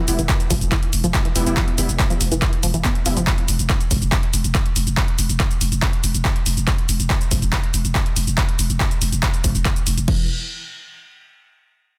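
A bright, wave-folded rave stab with chorus and tape echo opens this driving, industrial peak-time techno excerpt at 141 BPM in E phrygian, joined at once by a growling, buzzy 808-style bass through tube saturation and a low-pass filter, a dry, up-front analog drum machine of crash, handclaps, hi-hat and shaker, a tight, detuned sawtooth synth riff with dub echo, and a punchy, layered kick re-recorded in a small room; the stab, bass, riff and drum-machine percussion all pump under sidechain, and the stab and riff drop out at 3.2 seconds while bass and drums press on over a single Em chord in a dense, heavily limited master.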